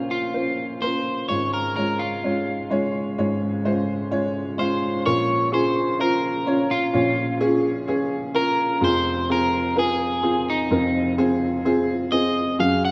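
A picked electric guitar at the edge of break-up carries the melody up front, its tone slightly broken-up, in this bittersweet yet driving pop piece in Bb minor at 128 BPM in a straight 4/4. A woody, boxy upright piano, slightly detuned and thickened by a lush chorus, sits equally close and supplies the accompaniment alongside the guitar for the full 12.9 seconds, moving from Bbm through Db/Ab before a new section begins at 5.1 seconds and the harmony shifts to Fm at 8.8 seconds. A lush hall reverb with a 2.1-second decay soaks the mix in a dreamy wash.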